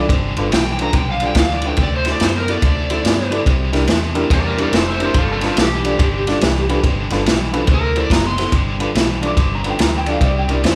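A dark, woody upright piano, a biting overdriven guitar riff with harmonic tremolo and a round, punchy muted electric bass open this soulful, swaggering electric blues shuffle at 142 BPM in G mixolydian, with a gritty, saturated breakbeat drum kit of tight kick, snare and dark ride cymbal joining up front almost at once. From 0.5 seconds, a bright overdriven slide guitar takes the lead with a solo over rich ninth chords, holding the melody until 8.5 seconds before the band carries on with the same section. The whole band plays live in one large studio room, with moderate reverb giving the swung groove a cohesive, roomy feel.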